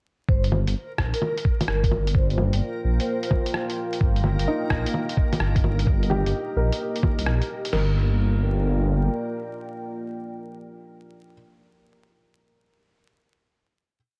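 Opening at 0.3 s, this melancholic, nocturnal future garage piece in G minor at 129 BPM, with a 67% swing, sets soft-mallet vibraphone with tape echo over a menacing, detuned, sidechain-pumped saw bass, a muffled, gritty two-step kit of thumpy kick, snare and crash, a skittering shuffled beat of bongos, hi-hat and rim click, and, from 0.9 s, a faint reversed, granular swell, before a deep ambient pad with chorus drifts in and a worn, woody upright piano with audible action noise enters at 4.5 s, moving from Gm7 to Eb/G and back to a final Gm7 chord held from 7.7 s under vinyl crackle.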